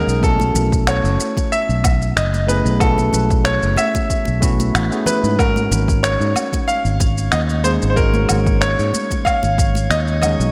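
Sunny and relaxed, this sunset chillout excerpt, cut from a longer piece, moves with a light swing in 4/4 under a dreamy mix soaked in lush hall reverb. A bright, brilliant grand piano carries the melody up front with short sustain and tape echo, while a barky tine electric piano, clean through a combo amp and also touched by tape echo, supplies the accompaniment. A round, punchy fingered electric bass sits up front beneath a punchy, layered electronic kick, with a gritty, sampler-style kit of electronic shaker, finger snaps and woodblock and very quiet, close congas played with hard hands. At 5.9 seconds a glassy texture of drifting overtones enters in the background, slow to bloom and sustained with chorus and its own reverb. The harmony rests on a suspended ninth chord that shifts down to another at 5.4 seconds.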